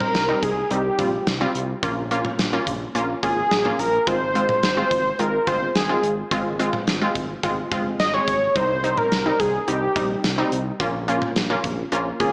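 A thick, bold unison lead opens the excerpt at once, carrying a detuned sawtooth melody between G4 and Eb5 with vibrato and a digital delay trailing behind it, while a bright, punchy unison pluck supplies accompaniment beneath with a noise layer, ring modulation and a filter sweep. This is nocturnal, driving synth-pop in F minor at 107 BPM in a straight 4/4, tuned slightly low to A4 = 438 Hz. A gated 80s drum kit plays throughout with hi-hat, a punchy kick, a medium-tuned snare and toms, its sound airy and polished within a gated room. At 0.1 seconds a smooth, mellow synth bass joins low in the mix, holding sustained sawtooth and triangle tones between G1 and C2. The harmony moves from Cm to Bbm to Fm and back through Cm and Bbm, all set in a moderate, lush hall reverb with small room ambience and a small speaker character, in a fragment cut from a longer piece.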